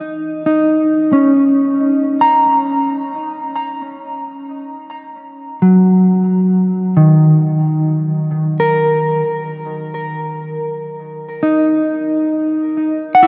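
Serene and weightless, this ambient piece drifts in free time, cut from a longer work. A single mellow electric guitar carries it alone from 0.0 to 13.3 seconds, its clean, fingered tone dark and placed up front. Tape echo trails the guitar's notes, which range from D#3 to A#5 over a lone D#m7 harmony. A huge, wet reverb with a decay of 7.7 seconds surrounds the playing, giving the sound a vast, hanging space. The production is dark and warm.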